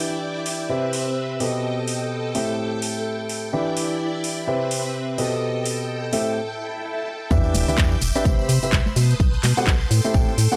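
Soulful and energetic, this piano house cut in E minor moves at 127 BPM with a swung sixteenth-note feel. A dark, woody upright piano carries the riff up front from the start, its tape echo and sidechain pumping sitting over shimmering, vintage string-machine violins that hold sustained chords through an ensemble chorus. Handclaps, metallic hats and shaker from a tape-warmed house kit join at 0.5 seconds, while the chords cycle through Em7, Cmaj7, B7b9b13 and Am7. A brief break opens at 6.4 seconds, and an electronic swell leads into a sub drop. At 7.3 seconds the drop lands with a punchy electronic kick, a hollow, percussive organ-like FM bass and soft-handed tambourine and congas in the background, all on a dry, gritty cassette-tape sound.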